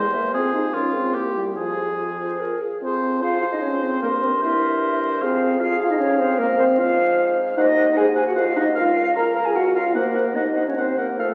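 A quick, stormy classical-period movement for wind quintet in F minor at 151 BPM in a rubato 3/4, where a hollow, tongued flute with vibrato carries the urgent melody over an up-front oboe second line with light vibrato, a mellow, close-miked French horn and a distant, roomy clarinet in accompaniment, and a warm bassoon bass, all heard through a resonant recital hall and the crackle of a very old 78 rpm record as this cut from a longer piece moves into a new section at 2.8 seconds.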